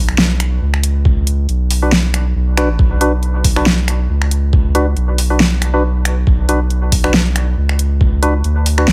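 A round, deep sub bass with tube saturation opens this brooding, heavy deep dubstep excerpt in B minor at 138 BPM with a half-time, lightly swung feel, joined at once by an overdriven kit of finger snaps, hi-hat and a huge snare, then a muffled, thumpy pitched-down kick from 1.1 seconds and a hollow, dark organ stab from 1.8 seconds, its subtle chorus and dub echo set against a dry sound.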